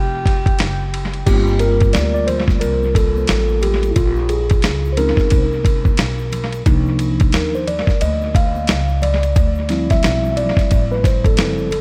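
A swung 89 BPM groove in 4/4 drives this mellow, cool jazz-hop excerpt in G minor, with a gritty, sampler-style drum kit up front, its thumpy kick and medium-tuned snare touched with analog delay, while a woody pizzicato upright bass anchors the low end from the start. A breathy, distant alto saxophone voices a brief whispered phrase that ends by 0.9 seconds, and at 1.3 seconds a clean, up-front tine electric piano solo enters over Gm11, Bbm11, Cm11 and Dm11 chords, as very quiet congas and egg shaker add a bright, saturated shimmer beneath. The dry, echo-heavy mix keeps the sound close and intimate.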